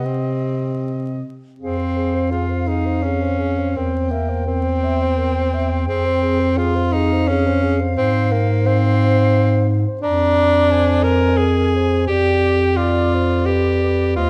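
Close-miked and up front, the bass clarinet anchors this solemn, melancholic classical excerpt for single-reed quartet, holding the low register from Eb2 to C3 with a dark tone. Beside it, a clear tenor saxophone plays the accompaniment with vibrato, also sitting forward in the mix. Further back, a warm soprano saxophone with a smooth top carries the melody, while a dark alto saxophone adds a second line beneath it, both touched by vibrato. The piece moves at 86 BPM in 3/4 and F minor, but the beats are uneven and the rubato gives it a lyrical, breathing quality, with a new section arriving at 1.6 s and the harmony travelling from Fm through C7/E, Dm7b5/F and G7/F. A moderate recital hall reverb and a layer of vinyl crackle surround the quartet.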